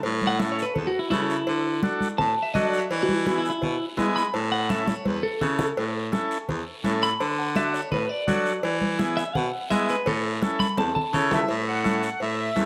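This close, detailed recording with light reverb captures a joyful, danceable cumbia in A major at 168 BPM, a short passage cut from a longer piece. A raspy baritone saxophone carries the bass line up front, gritty and punchy with a smooth top and vibrato, while bright, damped congas played with soft hands sit close and dry beside it. Quiet, ringing cowbell and timbales add a live-room shimmer, and a compressed, saturated guiro scrapes in the background. From 0.3 seconds a twangy, picked electric guitar takes the solo through spring reverb and slapback echo, over a vintage, buzzy combo organ comping through its own spring reverb and the chords A, D and E. Drum fills mark the phrase ends, and at 11.2 seconds a reedy, mid-forward accordion with slow beating enters, taking a brief solo from 11.5 seconds to close the passage.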